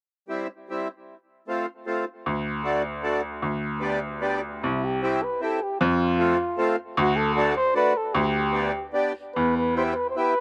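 Alpine folk for an alpine dance band, this short excerpt from a longer piece has a bouncy, festive mood at 152 BPM in 3/4, though the feel is rubato, and it sits in C major. The accordion opens at 0.3 seconds with reedy, full accompaniment that carries a boxy small-room character and slapback echo, placed up front. A bright baby grand piano joins at 2.3 seconds, taking the bass line in its low register with a brilliant, natural tone that also sits close to the listener. At 4.7 seconds, as the second section begins, a mellow flugelhorn enters as the solo melody, played in a classical style and touched with slapback echo. The harmony moves through C, F, D and G over D, then repeats and ends on E minor. The sound is dry and open, recorded outdoors with little reverb.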